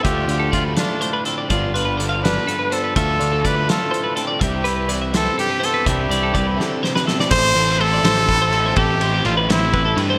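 A bright, smooth-topped trumpet leads up front with pop-style vibrato, carrying a wistful melody over an intricate math rock and midwest emo bed in 6/8 at 82 BPM, moving through Dm7, G7 and Cmaj9 before shifting to Am at 7.3 seconds after a drum fill. Warm, clean twelve-string electric guitar arpeggios, a double-tracked overdriven guitar riff and a clean, direct-recorded guitar with warbly pitch drift sit beneath it, while a fuzzy, overdriven picked bass pushes forward and the clean guitar drops out at 8.8 seconds. A loose indie kit with a fat snare, punchy kick and dark cymbals thumps through gated reverb in a pumping room, all set in a lush hall with bright 1980s-style digital production in this excerpt from a longer piece.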